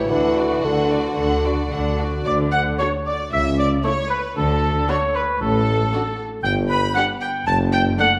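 An up-front cor anglais with light vibrato enters at 2.3 seconds alongside a clear, soft-edged tuba, shortly after a mellow solo bassoon closes at 2.0 seconds, in this quirky, mischievous cinematic cue at 115 BPM in D major, where an intimate sul tasto violin section carries the melody over a lush, focused second violin line, smooth background violas, expressive close double basses and portamento-tinged cellos, all bowed ensembles set in a recital hall's reverb.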